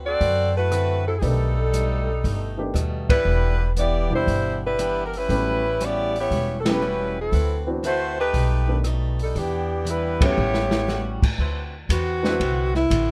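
Big band swing jazz, brassy and swinging, where a tight saxophone section with light vibrato carries the melody over woody, growly pizzicato upright bass, a dark drum kit with a boomy kick, a bright, boxy picked acoustic guitar and an intimate baby grand piano, all punctuated by band accents and a brief drum fill in a dry sound, until a mellow saxophone section holds sustained chords from 11.4 seconds and a present alto saxophone with vibrato and subtone takes a solo at 11.9 seconds in this excerpt from a longer piece.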